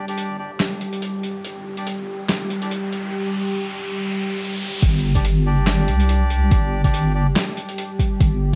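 A heavy, cavernous excerpt of deep dubstep at 142 BPM in a half-time, lightly swung 4/4, opening over vinyl crackle on a G5 chord. A dark, detuned sawtooth pad with chorus, a reedy, breathy melodica playing filtered stabs through dub echo, and an up-front, sine-rounded wobble bass all begin together, a muffled, pitched-down sampler kit of handclaps, hi-hat and snare enters just after, and an electronic riser builds from 0.9 seconds. At the drop at 4.8 seconds an overdriven, layered electronic kick joins the dry mix, which is tuned slightly low to A4 = 439 Hz.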